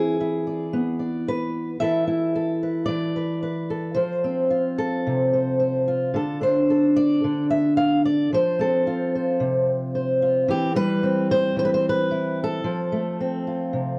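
Folk fingerstyle piece for solo steel-string acoustic guitar, gentle and hopeful in mood, moving in a straight 4/4 feel through chords such as E7, Asus2/E, F, D5 and C/E. The fingerpicked guitar sits up front with a concert-instrument character, spanning C3 to F5 across the full 14 seconds. Light reverb and a dark, warm production give the sound a warm glow.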